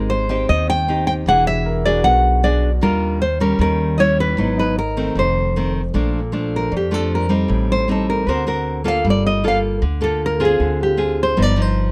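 Two fingerpicked nylon-string guitars open this breezy, sunny bossa nova fragment at 154 BPM, one carrying an up-front classical melody on fresh strings while the other lays down full-bodied chords with audible finger squeak, over woody, dark pizzicato upright bass and a warm, open grand piano with long sustain and deep bass, tucked in the background from 0.3 to 7.5 s with a brief return at 10.4 s, before a nylon-string guitar takes a solo from 5.9 s as the harmony settles into Bb major, the whole captured close and dry with fine detail.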